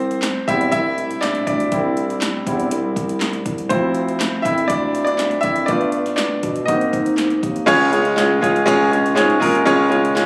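Warm and anthemic, this piano-driven pop excerpt in C mixolydian moves at 121 BPM, with a clear, up-front baby grand piano carrying a solo passage until 7.7 s over a distant, roomy bass clarinet line and an overdriven deep house drum kit of deep kick, punchy snare, metallic hats, handclaps and crash cymbal, all captured on a phone in a room with light club reverb as the chords shift from C through Dm7, G7 and Ab7 to land on Db at 7.7 s.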